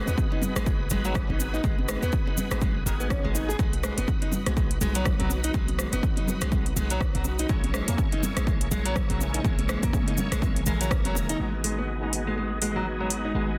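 A punchy, overdriven electronic kick sits up front in this spiritual, earthy afro house excerpt at 123 BPM in G# minor, swung on the sixteenths and tuned to A4 = 444 Hz. A layered house kit with metallic hi-hats and rim clicks joins it, while close, hard-handed congas ring in the background and a grainy, dry cabasa adds texture; the kick stops at 11.0 s. Beneath them, a deep, boomy 808-style bass carries sidechain pumping, and a small, dark, fingerpicked nylon-string guitar plays arpeggios through a low-pass filter and digital delay. A bright, shouting tonewheel organ with key click, chorus vibrato and a slow rotary speaker fires off stabs. An ethereal, airy pad of detuned sawtooth and triangle voices enters at 4.9 s with a slow attack, phaser and ensemble chorus, sustaining chords over G#m7, B and A#m7b5 before the progression returns to G#m7. Light reverb and a dense, heavily limited modern master round out the sound.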